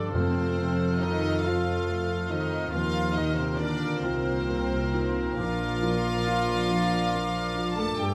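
A clear, pure violin section carries the tender melody, bowed sul tasto with a floating quality, over a moving film score for orchestra in Bb major, taken at a rubato 46 BPM in dotted quarters of 6/8. An airy silver flute, a smooth cor anglais and a soft-edged second violin line join a dark, long-sustaining baby grand piano, a background viola section, mellow French horn chords and a very quiet, ringing fingerpicked harp playing arpeggios. A shadowy double bass section and an intimate cello section, both with light vibrato, anchor the harmony as it moves from F to Ebsus2 to Bb, while calf-headed timpani sound only from 0.1 to 1.4 seconds, all within a moderate scoring-stage reverb in this short fragment of a longer piece.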